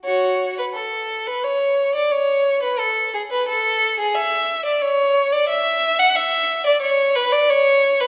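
A flowing triple metre at 89 BPM moves with a rubato give and take, lending this baroque-style suite movement for unaccompanied violin a dance-like lilt. A single bowed violin carries the whole passage alone from 0.0 to 8.1 s, its line ranging from F#4 up to F#5. Its tone is rich and focused, shaded with vibrato, and it sits up front in the mix. The space around it is a reverberant recital hall with a 1.5-second decay, heard from further back in the room, which gives the playing an airy halo. This brief passage is cut from a longer classical piece.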